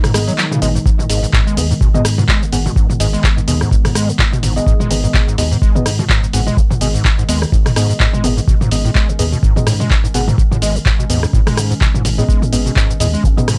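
A squelchy, resonant acid bass riff with saturated cassette grit drives this raw acid house excerpt, pumping with sidechain compression over a round, dark analog bass line and a punchy, up-front drum machine of handclaps, hi-hat, rim click, shaker and toms. An overdriven electronic kick enters at 0.9 s, while soft, deep chord stabs treated with chorus, phaser and tape echo drift above a warbling, nostalgic tape-like pad sitting in the background on a single G# minor chord. The sound is dry and gritty, with a lo-fi hardware edge.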